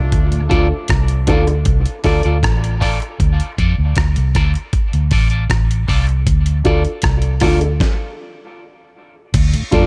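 Meditative and spacious, this dub reggae excerpt in D minor moves at 78 BPM over a single Dm chord, anchored up front by a round, foam-muted electric bass and a gritty, compressed sampler-style kit with a thumpy kick. A twangy, slightly broken-up guitar and woody, short-sustain piano stabs enter at 0.5 seconds, both steeped in dub echo, while a clean tonewheel organ with key click and slow rotary speaker sits in the background and tight, high-tuned bongos add very quiet soft-hand accents. A filter sweep runs from 0.1 to 6.3 seconds before a stop at 7.8 seconds, the whole mix set in a digital ambience.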